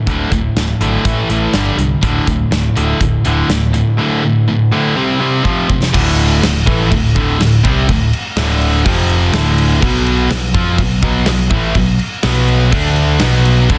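Hard rock in D dorian at 123 BPM, this aggressive, heavy excerpt from a longer piece pairs an up-front, overdriven cranked stack guitar with a scooped, high-gain distorted guitar, both riffing on power chords from D5 through A5, G5, C5, F5 and B5. A growly, amped picked electric bass and a polished acoustic rock kit with bright cymbals, a punchy kick and a medium-tuned snare drive the song, and a drum fill at 5.5 seconds leads into a new section at 5.9 seconds. Light reverb and small room ambience sit under a dense, heavily limited modern master.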